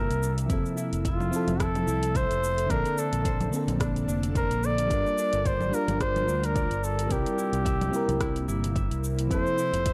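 A warm, up-front flugelhorn with light vibrato carries the melody through this smooth, relaxed sunset chillout excerpt in F major at 109 BPM with a 16th-note swing, backed by a round, dark FM electric piano with chorus and tape echo, a ringing fingerpicked Celtic harp arpeggiating in the background, an ethereal, airy pad with phaser, a fretless electric bass, and a deep house kit of metallic hats, cabasa, congas and rim click joined by a deep electronic kick at 0.5 seconds, all captured in a dry, gritty recording.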